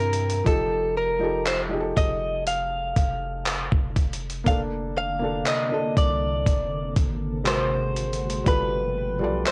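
A bright, clean, direct-recorded electric guitar carries the longing melody up front in this moody 60 BPM contemporary R&B excerpt, over a gritty, compressed sampler-style drum kit with thumpy kick, hi-hat and handclaps, a soft felt-muted upright piano with audible action noise, and a deep, sine-toned 808-style bass, while a glassy, ethereal FM pad with chorus and sidechain pumping enters at 4.5 seconds as the chords move from F9 through Bbmaj9/F, Ab9 and G9, with tape grit from the cassette home recording on the guitar, piano, drums and pad.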